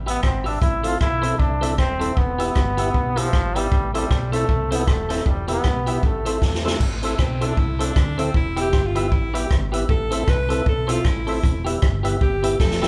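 Energetic and mischievous, this ska cut from a longer piece swings along at 155 BPM in A minor, with a punchy, up-front big-band drum kit, a dark, round fingered electric bass, a clean, twangy electric guitar and a mellow tonewheel organ with chorus vibrato stabbing through a live room sound. A brilliant, vintage trombone carries the melody up front with light vibrato and a soft attack until 6.6 seconds, then a drum fill hands over to a breathy, close-miked alto saxophone solo from 6.8 seconds to the end, all over chords moving between Em and Am.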